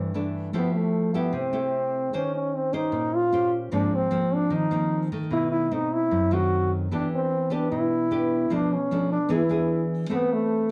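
A punchy, forceful trombone carries a jazz-style solo melody full of scooped notes over fingerpicked classical nylon-string guitar, audible down to its finger squeaks, in this breezy, sophisticated bossa nova fragment at 151 BPM, which moves through lush extended chords from C69 to Am9 within a wet, reverberant studio room, heard from further back.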